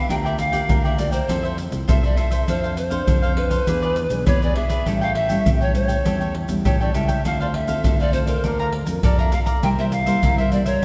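Nostalgic and bittersweet, this brief samba-choro excerpt sets an airy bamboo pan flute, tongued with chiff and vibrato, over crisp picked cavaquinho, a thumb-plucked nylon-string guitar in the background, a growling overdriven fingered electric bass and close, dry tube shaker, deep surdo and hard-handed pandeiro up front, all bathed in the long reverb of a concert hall.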